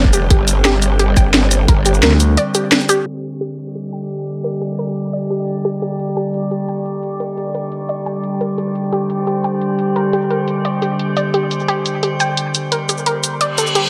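An eerie, metallic drone of sustained FM chords with a vintage warble hangs over this dark, futuristic excerpt of technical drum and bass at 174 BPM in 4/4, pumping against a tight, layered electronic kick and a saturated, wobbling growl bass that gives way at 2.0 s to a thick, growling FM bass. A lo-fi, detuned sawtooth pluck plays dusty arpeggios through chorus and dub echo, while a drum-and-bass kit drives hi-hat, shaker and a cracking snare beneath low-pass filters. From 3.1 s, filter sweeps move across the drums and the arpeggio inside a lush digital hall, and a reverse cymbal enters at 13.5 s.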